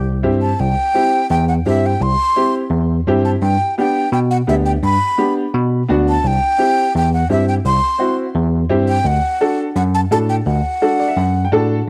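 Latin piece at 170 BPM, festive and sunny, cut from a longer work, where a breathy, vibrato-laden jazz flute with cassette-tape colour carries the melody over a bell-like, clean electric piano holding the bass and a woody, intimate upright piano with audible action noise and cassette grit supplying accompaniment and a closing fill at 10.8 seconds, all moving through C, G, C and D in a home-recorded studio reverb.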